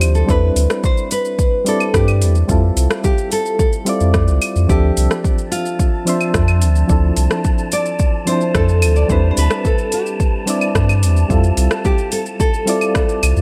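Sunset chillout at 109 BPM in D dorian, relaxed and unhurried, with a fingerpicked nylon-string guitar carrying the melody through delay over soft, round electric-piano-like synth keys shimmering with chorus, tremolo and delay, while a deep, rounded sub bass sits up front beneath the chords of Cmaj7, Fmaj7 and Dm7. A deep house kit of claves, metallic hi-hats, rim click and shaker, plus an overdriven electronic kick entering at 0.3 seconds, gives a gritty, produced pulse. From 5.4 seconds an airy, breathy, wind-like tuned noise layer drifts in low in the mix, all set in a light digital ambience, in a short cut from a longer piece.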